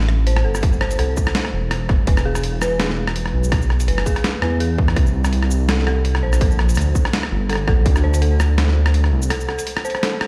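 Cinematic and heavy, this half-time drum and bass excerpt rides a deep, rumbling detuned saw bass up front, an overdriven, hard-clipped electronic kick from 0.6 to 7.9 seconds, a gritty, pitched-down sampler-style kit of hi-hat, rim click, shaker and snare, and an eerie, inharmonic synth bell arpeggio with chorus, tremolo and digital delay, all heard through the stone reverb of a bare room before the bass drops out for a break at 9.3 seconds.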